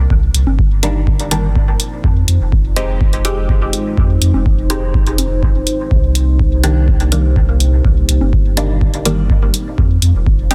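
A moody analog pad and a round sine sub bass open this meditative dub techno excerpt in C minor at 124 BPM, both pumping with sidechain. The pad's dark sawtooth and triangle chords, thickened by a sub octave, arrive on a slow attack and sustain through chorus and phaser, while the warm bass holds low beneath them. A deep, tape-warm analog kick and a layered hi-hat, re-recorded in a small room, set a straight 4/4 pulse. From 0.8 seconds a muted, detuned sawtooth chord stab adds filter-plucked hits with a short decay, bright at the edges, colored by phaser, pumping and dub echo. Dry congas sit in the background in brief spots, most notably around 4.3 seconds, trailing dub echo as the harmony moves between Cm7 and Fm7 within a dense, heavily limited master and digital ambience.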